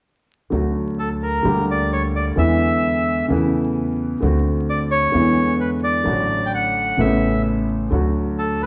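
A reedy, boxy bandoneon sings the melody up front from 1.0 seconds in this passionate, playful tango in D major at 130 BPM with a rubato feel, over a smooth, vintage concert grand piano with deep bass accompanying and a woody, thumpy pizzicato upright bass that both begin at 0.5 seconds, all captured as a band playing live in one room with a large studio reverb and vinyl crackle in this fragment cut from a longer piece.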